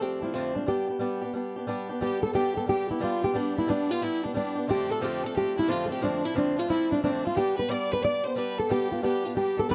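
Swung eighth notes in four drive this bright, lively Celtic hornpipe, a short cut from a longer folk piece. A thumb-plucked nylon-string guitar carries the melody up front, its classical tone dark, with audible finger squeaks. Beneath it, a fingerpicked acoustic guitar supplies a boxy, swing-style accompaniment, also close and present, moving between Dm7/F and G. At 2.0 seconds a single fiddle enters with a second line, bowed with a woody, shadowy colour and light vibrato, sitting further back in the mix. Light reverb gives the acoustic instruments a modest sense of room.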